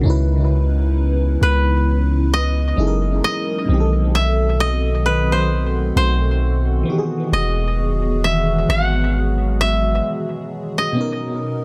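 A lush, dreamy FM electric piano with chorus, phaser and analog delay opens this slow, longing late-night R&B excerpt at 66 BPM, over a dark, moody ambient pad kept in the background and a deep, mellow 808-style bass held up front until 10.0 s. At 1.4 s a woody, dry koto enters with the melody, its fingerpicked notes trailed by analog delay. The chords move from C#m7 through F#13 and B7b9 to Emaj9 before settling on Bmaj7, all in an echo-heavy mix with light reverb and a lightly swung 16th-note feel.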